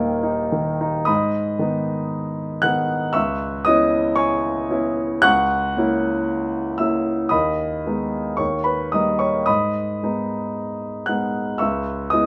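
Stormy and passionate, this romantic character piece for solo piano unfolds in G# minor at 57 BPM in 2/4, its rubato pulse stretching and pressing through a brief opening on D# before the main section takes hold at 1.1 seconds. The concert grand sounds warm, open and up front, ranging from a deep bass at D#1 up to F#6, with light reverb around it. Chords of G# minor, C#m7 and a diminished harmony over C# circle back through D# to G# minor before this fragment of a longer piece breaks off at 12.3 seconds.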